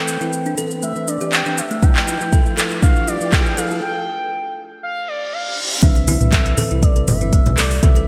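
Bright 1980s-style digital production with lush hall reverb frames this hypnotic afro house excerpt at 120 BPM, where an expressive, vibrato-tinged synth lead with chorus and delay sings over woody kalimba arpeggios and soft, flute-like tonewheel organ stabs turning through a slow rotary speaker, both pumping with sidechain. The afro-pop kit of handclaps, smooth hats, shaker and toms carries gated reverb, a deep, up-front electronic kick arrives at 1.8 seconds, and a background riser with reverse cymbal builds through a break toward the drop. At 5.8 seconds a sustained sawtooth synth bass and thin-skinned, low-tuned congas join as the chords return from Dm69 to Cmaj7.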